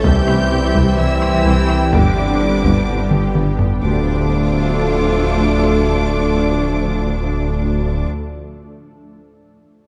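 A straight, steady 4/4 pulse drives this brooding, futuristic cinematic cue, cut from a longer hybrid orchestral and electronic film score. Solo taiko drums struck with hard sticks, compressed and saturated, sit in the background and build a fill from 3.1 s before falling away shortly before the four-second mark, along with a ringing, harp-like synth pluck playing mellow chorused arpeggios and a felt-muted upright piano adding soft, intimate texture. On top, a lush violin section carries the vibrato-rich melody high in its range, while a second, more distant violin section and a focused viola section fill in the inner lines. Beneath them, a roomy French horn section, a very quiet but present trombone section and a cloudy, evolving granular pad sustain the harmony, which moves from C to G and settles on D minor as the second section begins. The low end is heavy: bowed cellos and smooth-topped double basses, a close-miked dark tuba and a deep, thick sub bass with a saturated edge. 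Everything sits in a moderate scoring-stage reverb, giving the cue a dark, warm production.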